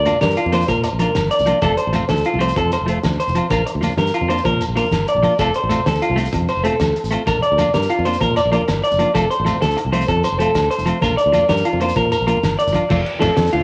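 A bright, twangy electric guitar through a small old amp sits up front, playing slightly broken-up picked arpeggios with analog delay over a round, punchy fingered bass and a clean, compressed semi-hollow guitar, while a muffled, cloth-damped drum kit with dark cymbals, ringing agogo bells, low-tuned congas and a grainy, distant shekere carry this joyful, carefree highlife passage in 12/8 as the chords alternate between Bb and F on a home cassette recording with light reverb and small-room ambience.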